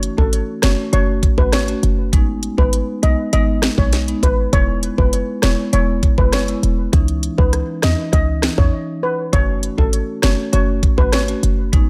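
Bouncy and hypnotic, this short dancehall cut sits in a straight four-beat groove and is taken from a longer piece. An electronic, produced island pop drum kit sits up front, with a knocking kick, sharp snare, smooth hi-hats and rim clicks carrying a tape-warm character. Beneath it, a short 808-style bass adds punchy, tight sine tones with a noise layer, a fast attack and a decaying tail. Over the top, a steel pan lead played with soft rubber sticks sounds metallic and shimmering yet mellow and dark, trailed by tape echo. A marimba struck with medium mallets fills in the accompaniment with sidechain pumping, while the chords move from F#m through G#m, E and C#madd9 before returning to F#m after a brief break between 8.7 and 9.3 seconds, all set in a small room ambience.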